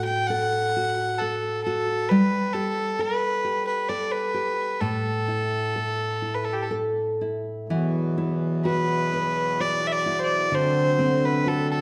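A single bowed fiddle leads this haunting Celtic slow air, its rich gut-string tone carrying a reedy edge as it sings the longing melody up front. Beside it, a full-bodied nylon-string guitar is fingerpicked in a deep classical manner, giving the accompaniment a warm depth. The piece moves in a gentle three-beat metre with a freely breathing rubato feel. At 7.7 seconds the music turns to a new passage as a hand-pumped harmonium enters with sustained low chords, its breathing, warm sound sitting just behind the two lead instruments. The harmony drifts through open, suspended colours such as Gsus2 and Esus2 before settling on D7. A wet recital-hall reverb surrounds the players, and the excerpt is cut from a longer piece, ending at 11.8 seconds.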